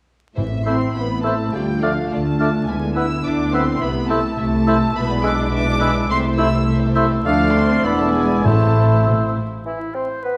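A quick, restless classical-period movement for symphony orchestra in A minor at 104 BPM in 2/4, played with an urgent rubato feel. Veiled, con sordino violins carry the melody above a second violin line, dark violas and a mellow bassoon in the accompaniment, and muted cellos and double basses on the bass, while a close-miked French horn section holds tight sustained chords. A hollow silver flute adds its own line, a clear oboe and a vintage-toned clarinet add theirs in the background, round timpani strike at 0.4 and 8.5 seconds, and the whole short cut sits in a wet scoring-stage reverb with vinyl crackle.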